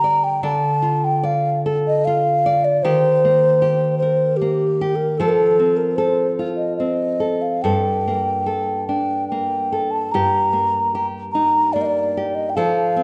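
A hollow, airy wooden flute with vibrato and a crisp attack sings a longing melody over fingerpicked classical nylon-string guitar, its finger squeaks audible, in this mournful Celtic slow air in rubato 3/4 at 71-78 BPM, tuned to A4 = 437 Hz and moving through Dm, Cm7/Eb, F, Gmadd9 and Eb/G across a 13-second fragment of a longer piece, both instruments up front in a moderate concert-hall reverb.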